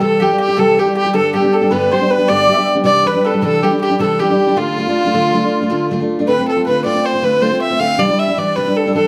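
Driving, dark and lively, this Celtic slip jig excerpt in D dorian moves at 105 BPM in 9/8, with a rich, nasal, gut-string bowed fiddle carrying the melody up front over a picked steel-string acoustic guitar accompaniment, while a round, double-strung mandolin, which stops at 5.9 seconds, and a shimmering, airy musette accordion add second lines in the background, all captured by close, detailed microphones with light reverb as the chords shift from C and G through Dm to Cadd9.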